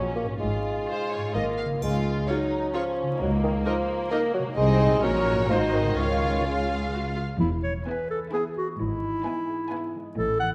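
A playful, whimsical cinematic film cue in a lilting 3/4, cut from a longer piece and carrying a magical air. A violin section with soft-attack vibrato sings the melody while a second, more focused and distant violin line moves beneath it, supported by a smooth, even viola section and a close, warm cello section sitting in the background. A rich double bass section anchors the bottom, and a mellow, ringing concert harp spins arpeggios throughout. A dark, roomy bassoon stands up front in the accompaniment until about 6.9 s, and a brief, dark, dry triangle touch sounds in the background around 1.8 s. At 7.4 s the music shifts into a new key and a new section, where a close-miked, warm clarinet steps forward with its own line alongside the strings. A moderate scoring-stage reverb gives the ensemble space, and a layer of vinyl crackle lends the sound a nostalgic patina.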